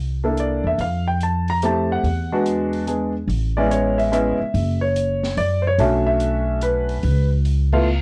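Relaxed, swinging jazz piano trio at 144 BPM in 3/4, cut from a longer piece, where a growly, woody pizzicato upright bass with transformer saturation and an intimate grand piano carrying the melody, its action noise audible and its low end deep, sit up front over a softer acoustic kit of dark cymbals, a high-tuned snare and a boomy kick, moving from C13 and Fmaj9 chords into A major at 3.3 s through Amaj9, Bm9 and C#7, with a band accent at 7.7 s and light reverb under a worn cassette-tape warble with pitch drift.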